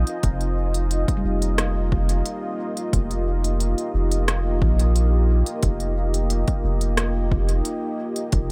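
Ambient dub at 89 BPM in 4/4, spacious and hazy, built on a deep, moody pad of detuned sawtooth unison layers with chorus and built-in reverb, sustaining an Ebadd9/F chord from 0.2 seconds, while a round, soft sub bass sits up front. A ringing, meditative handpan plays arpeggios through tape echo in the background until 3.0 seconds, and a small-room drum kit of smooth hi-hats and rim clicks enters at 0.1 seconds, joined by a punchy, overdriven electronic kick at 0.2 seconds. The overall mix is dry, with little reverb beyond the pad's own.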